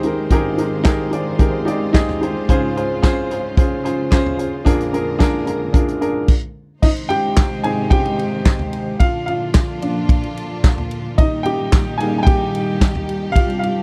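Piano-driven pop with an anthemic, uplifting mood, moving at 110 BPM in a straight 4/4 in Eb major. A woody, polished upright piano sits up front with a short sustain, carrying the accompaniment over the harmony of Abmaj7, Dbmaj7 and Bb7, then moving through Ab, Bb and Eb. From 6.8 s the piano takes a solo. A bowed studio string section holds sustained chords beneath it, played sul tasto with vibrato, soft attacks and a smooth top that keeps the ensemble intimate and close. A natural, acoustic country drum kit plays along with a punchy kick, a medium-tuned snare, hi-hat, ride and crash cymbals, toms and handclaps, all sounding in a studio room and sitting up front. The sound is dry and close, in the manner of a 1970s studio recording with little reverb, and this brief passage is cut from a longer piece.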